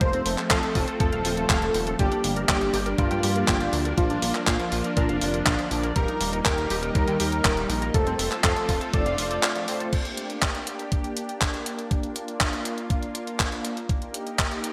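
A bright, 1980s-style digital sound bathed in lush hall reverb frames this danceable, melodramatic italo disco cut from a longer piece. A thick, detuned unison lead with delay and vibrato sings the melody over a sustained unison pad. Twangy clean electric guitar arpeggios and fat, warbling analog synth brass stabs sit in the background, while a glossy pulse-width synth bass with filter sweeps drives the low end. A thumpy electronic kick and an up-front, tape-warm 12-bit drum machine with gated-reverb handclaps, hi-hat and crash keep it moving. By 9.9 seconds the bass, lead, guitar and brass have dropped away, leaving the pad and drums to carry on through the final seconds.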